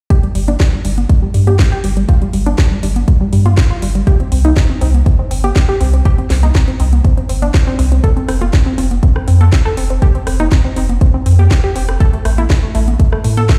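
A punchy, up-front electronic kick, a house kit with cracking snare, metallic hi-hats and rim clicks, and a lush, detuned sawtooth unison pluck playing bright arpeggios under a filter sweep and digital delay all open this driving, bittersweet progressive house passage at 121 BPM. A deep, thick and mellow saturated sub bass arrives at 0.4 s, and overdriven analog-toned congas sit in the background from 0.5 s, with sidechain pumping on the bass, pluck, hats and congas as the harmony moves through G5, C5, F5 and A5 chords. The whole mix sounds as if played on a big sound system in a bare stone room, giving it a hard, reverberant ambience.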